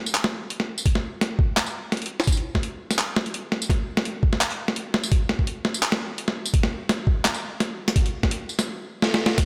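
A gritty, sampler-style boom bap kit opens this tense, dark drum and bass passage in a half-time swing, its high-tuned snare, handclaps, hi-hat, tambourine and crash sitting up front with a compressed, large-room sound. A thumpy electronic kick joins at 0.9 seconds, carrying the same gritty, roomy character as the section builds. A drum fill at 9.0 seconds closes the short cut under light reverb.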